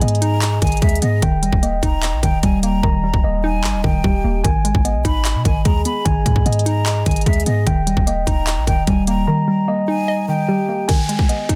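This dark, brooding trap cut sits at 149 BPM in a half-time feel, moving through G# harmonic minor as G#m and D# chords alternate. An electronic drum kit sits up front, with a hard-clipped kick, crisp hi-hats and handclaps carrying a tape-warm grit. A deep, boomy 808-style bass with a clean sine tone punches in and decays beneath it. A mellow tine electric piano plays arpeggios through a digital delay, while a hollow, detuned square-wave pluck bounces and warbles with a vintage, wave-folded, chorused character. High above, a breathy metal jazz flute with vibrato and lifted highs floats a delayed second line. The hi-hats drop out from 2.8 to 4.4 seconds, the drums fall away from 9.3 to 10.9 seconds, and an electronic downlifter closes this excerpt at 10.9 seconds, all set in a digital ambience under a dense, heavily limited modern master.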